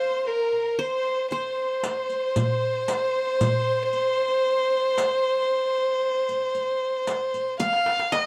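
A hypnotic, melancholic Turkish makam ensemble piece in 10/8 at 114 BPM opens with a woody solo violin carrying the melody up front with vibrato, while a bright, plectrum-plucked qanun with tape echo and a rich, smooth-topped chamber violin section weave second lines in the background; a crisp, saturated metal-shell darbuka joins at 0.5 seconds and a vintage, band-limited riq with dark jingles at 1.3 seconds, before a drum fill arrives at 7.6 seconds, all set in a moderate studio reverb.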